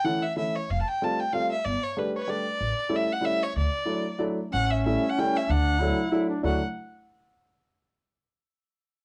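A rich, focused bowed violin carries the melody over an intimate, woody upright piano with audible action noise, opening a nostalgic, charming musette waltz in D major at 188 BPM in a loose, rubato 3/4. A growly pizzicato upright bass with bright steel strings and tube saturation joins at 0.7 seconds, and at 4.5 seconds a close-miked duduk adds a vibrato-laden, folk-style second line. Light reverb and the warbling pitch drift of worn cassette tape give this short fragment of a longer piece an old, faded feel.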